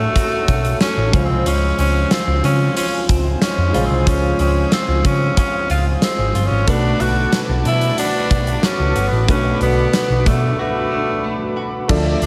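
A raspy, gritty tenor saxophone carries the melody up front in this uplifting, romantic 1980s-style pop excerpt, its clear tone touched by light vibrato and set back in a roomy, distant space. Beneath it, a hollow-body short-scale electric bass plays picked lines with a dark, round, amped sound, while a huge arena drum kit enters at 0.2 seconds with a punchy kick, medium-tuned snare, hi-hat and crash cymbals in a pumping hall. In the background, a concert grand piano offers intimate accompaniment with audible action noise, deep bass and long sustain, joined by a direct-recorded, compressed electric guitar riff shimmering with lush chorus. A brassy, bright sawtooth analog pad holds detuned chords with a slow attack, filter swell, chorus and tremolo. The harmony moves from F#m to C#maj7 and then Bm7, with a break arriving at 10.6 seconds before the clip ends.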